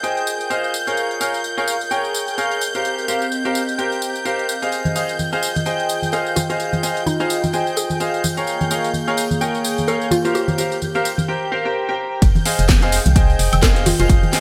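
A brilliant grand piano riff leads this energetic, soulful piano house excerpt, with chorus, digital delay and sidechain pumping. It sits over shimmering string-machine violins, a warbling lo-fi tape-like pad and a house drum kit of cracking snare and metallic hats in gated reverb, and close acoustic tambourine and congas join at 4.7 seconds. A bouncy square-wave pluck carries a chorused melody from 6.1 seconds, and at the drop at 12.2 seconds a punchy, up-front electronic kick, a dark organ-like FM bass with tube saturation and a very quiet, gritty sampler-style kit of ride and snare arrive, all within bright 1980s-style digital production and a lush hall reverb.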